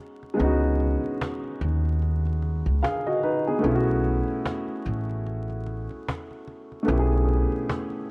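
A dark, mellow upright piano opens this cosy lo-fi hip hop excerpt with a vintage, tape-softened and filtered tone, moving from Db9sus4 to Cb9sus4 at 3.6 seconds. A close, acoustic cajon struck with hard hands and faint snares joins at 0.2 seconds with gritty 12-bit sampler texture, and a pizzicato upright bass on steel strings sits up front with woody, tube-saturated depth. Swung sixteenths give a relaxed lilt, while light small-room reverb and vinyl crackle add a dry, gritty hardware character.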